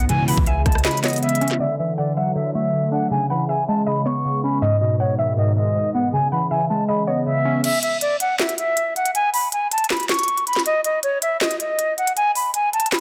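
A half-time trap groove in 4/4 drives this dark, eerie hip hop excerpt, with a trap drum kit of knocking kick, sharp snare, crisp hats, handclaps, rim clicks and crash sitting up front for the opening 1.6 seconds, then dropping out until it returns at 7.6 seconds with the kick muted. A breathy, mellow concert flute carries the melody throughout, its vibrato and crisp attack softened by rolled-off highs, low-pass filtering and delay. Beneath it, glassy, detuned digital keys with chorus and a filter sweep supply the accompaniment until 7.7 seconds, while a woody, round mallet-like pluck adds a quieter second line in the background. The opening moments also bring a brief punchy, heavy 808-style bass and a fat, full-bodied sawtooth polysynth stab. The harmony moves from C#m7 through Dadd9 and G#m before the chords fall away at 7.6 seconds, leaving the flute over the returning drums, all framed by light digital ambience and a dense, heavily limited modern master.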